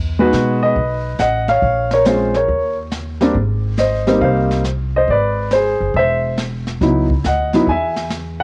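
A woody, thumpy upright bass opens this playful, swinging jazz piano trio at 139 BPM, with the baby grand piano joining up front at 0.2 seconds, its natural, short-sustained tone colored by cassette tape. Brushed drums enter at 0.3 seconds, airy and polished, with a medium-tuned snare and a boomy kick. The harmony moves from Emaj9 through G#maj9 and G#aug to C#m11 under light studio reverb, in a home cassette recording cut from a longer piece.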